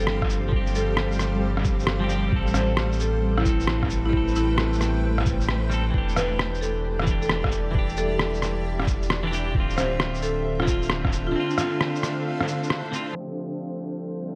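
A woody marimba with rosewood bars carries the melody in this wistful, nocturnal future garage excerpt, its tone roughened by vintage 12-bit sampler grit and trailed by analog delay until it falls away at 12.2 seconds. Beneath it, a bright, twangy clean electric guitar plays picked accompaniment through a diffuse ambient delay. A cloudy, evolving granular pad holds blurred, full-bodied chords from G7sus4 through Am7, Em7 and Dm7. The guitar and the pad both pump against the sidechain, as does a round, deep sine sub bass sitting up front. The swung drums pair a muffled, pitched-down, sampler-style shaker and rim click, tape-toned and placed up front, with a thumpy kick that stops at 11.1 seconds, shortly before the bass drops out. The whole dreamy mix is soaked in a lush hall reverb, dusted with vinyl crackle and dulled by a low-pass filter, and a filter sweep closes the fragment from 13.2 seconds as the harmony returns to G7sus4.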